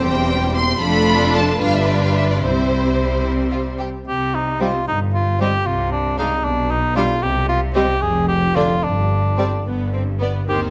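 A graceful, lively classical-period orchestral passage in a rubato 6/8, cut from a longer piece, where rich, vibrato-laden violins carry the melody over a focused second violin line, close viola accompaniment, smooth cellos and expressive, distant double basses, and a close, up-front cor anglais joins at 4.1 s with a warm second line, all set in a moderate recital-hall reverb.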